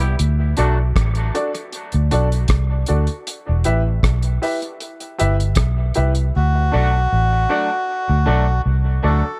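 This heavy, meditative dub reggae excerpt at 78 BPM in a straight 4/4 opens on a dark, round, foam-muted electric bass sitting up front. With it comes a cloth-damped acoustic drum kit of thuddy kick, hi-hat and rim click, dry, with a tight kick and a rolled-off top, plus a brief touch of clean, twangy electric guitar carrying dub echo. A worn, woody upright piano, slightly detuned, soon adds echoing stabs as the chords move from D to Em. The drums drop away at 6.3 s as the harmony returns to D, and at 6.4 s a reedy, breathy melodica enters up front with a nasal melody trailed by dub echo. The guitar returns alongside it, and a light reverb gives the whole a gentle sense of space.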